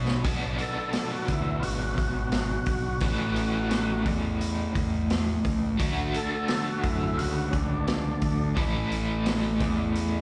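A straight 4/4 pulse at 86 BPM opens with a drum fill from the vintage kit, whose punchy kick, medium-tuned snare and hi-hat sit up front with a mid-forward, rolled-off top. This brooding, gritty classic rock excerpt in B minor moves through Bm, A, D and back to A, carried by a crunchy, double-tracked guitar riff with tremolo and a growly, fuzz-soaked fingered bass, both up front for the full ten seconds. At 0.6 seconds an overdriven tonewheel organ takes the lead as a solo, its thick, full tone marked by key click, chorus vibrato, slow rotary speaker and slapback echo, until it stops at 8.6 seconds. The organ sits a little lower in the mix than the guitar, bass and drums. The whole performance comes across like a live gig heard through the venue's PA, with club reverb and a touch of studio ambience around it.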